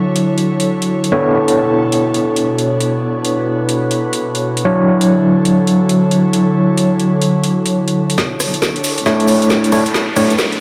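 Echo-heavy and bathed in moderate spring reverb, this moody, bouncy two-step UK garage excerpt in B minor at 136 BPM sets barky, gritty overdriven tine electric piano stabs with medium tremolo and dub echo up front over an airy, breathy pad's sustained Dmaj9 and Bm11 chords and a swung garage kit of woody snare, rim click and metallic hats, until at 8.2 seconds a build-up brings a deep, dark wobble bass, a very quiet knocking electronic kick, a grainy, distant tube shaker, a drum fill and a filter sweep on the electric piano, with a riser joining at 8.9 seconds.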